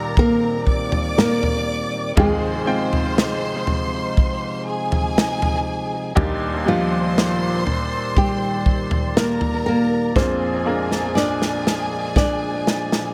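A tender, heartfelt pop ballad at 60 BPM sets a dark, fingerpicked nylon-string guitar melody with audible finger squeak and analog delay alongside a distant, lush bowed violin section, a brilliant, woody upright piano with audible action noise, and a fat, lightly overdriven tonewheel organ with key click and slow rotary speaker, all sounding from the start, while a punchy, up-front country drum kit enters at 0.2 s and plays a fill from 10.2 s, all set in an echo-heavy mix with spring reverb.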